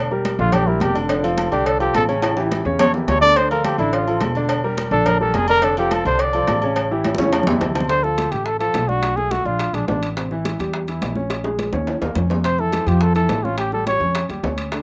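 Sultry and fiery, this Afro-Cuban jazz excerpt in D minor races along at 212 BPM as a dark, breathy trumpet with scooped notes takes the lead up front, over a warm concert grand piano, a woody pizzicato upright bass, ringing agogo bells and timbales, round, saturated cowbell and bongos struck with hard hands, and bright congas in the background, with drum fills at 2.2, 7.0 and 11.3 seconds in a dry outdoor sound.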